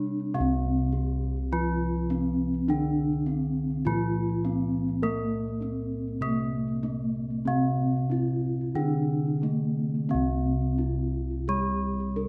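From the first moment, a shimmering, ceremonial excerpt of Javanese gamelan in C slendro unfolds at 87-103 BPM, with a mellow, airy bronze metallophone melody struck with padded disc mallets, its paired tuning producing shimmering beats and colored by tape echo, over a bright, dry, full metallophone accompaniment played with a horn mallet up front and round, beating bossed gongs carrying the bass, all set in a moderate recital-hall reverb before the music shifts into a new section at 10.1 seconds.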